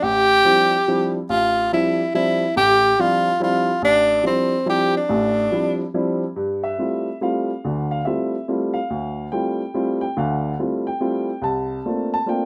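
Hypnotic and intense, this swinging jazz waltz fragment opens with an up-front tenor saxophone solo, its soft attack, vibrato and scooped notes giving the melody a warm voice until 5.9 s. The woody upright piano, also up front, carries the accompaniment with long sustain through to 12.5 s, moving from Dm11 to G13sus4 at 6.4 s and then C13sus4. The recording sits in a moderate club reverb.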